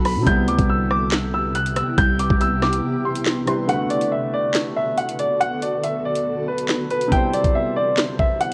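A clear, woody upright piano carries the melody up front in this ominous, tense half-time drill excerpt at 140 BPM in B phrygian, over a deep-bass concert grand piano accompaniment and a cloudy, detuned granular pad, while an electronic drill kit of knocking kick, sharp snare, handclaps, rim click and metallic hats drives the beat, a growling, buzzy 808-style bass drops out at 2.8 s for a break before the section change at 3.7 s, and the whole mix carries the worn, warbling pitch drift of old cassette tape.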